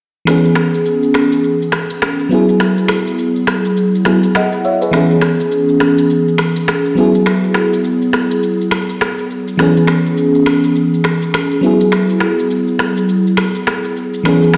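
A dreamy, detuned FM electric piano with a soft pad layer and chorus sits up front, alternating between C#m7 and Eadd9 chords in this sultry, mellow afrobeats fragment, accompanied by tape-warm electronic finger snaps, rim click and shaker on a swung sixteenth feel, with a lush 2.0-second hall reverb.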